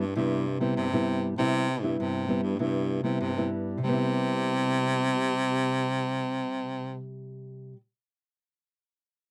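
Festive and playful, this short fragment of a longer piece blends samba and choro at 98 BPM in 4/4, with a straight feel in C major, opening on a Cmaj7 chord. A bright baritone saxophone sits up front and carries the low line in a classical style, its tone shaded with vibrato. Beside it, a small, warm nylon-string guitar is thumb-plucked as acoustic accompaniment, also close and present. The music moves into a new section at 3.8 seconds, and the saxophone drops out at 7.0 seconds, leaving the guitar to ring on alone until 7.8 seconds. The sound is that of a dry, intimate 1970s-style studio session, touched by only a light reverb.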